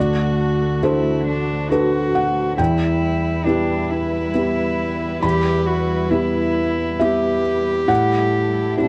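Longing and reflective, this short excerpt of neoclassical piano and strings drifts at 68 BPM in a rubato 3/4 in E minor, moving from D to E minor and reaching an A7 chord at 7.9 seconds. A felt-muted upright piano sits up front, dark and mellow with its action noise audible, while a single bowed cello played sul tasto floats as a pure second line touched by slapback echo. A chamber string section holds warm, lightly vibrato chords in the background, and the dry, close 1970s-style studio recording keeps the sound intimate.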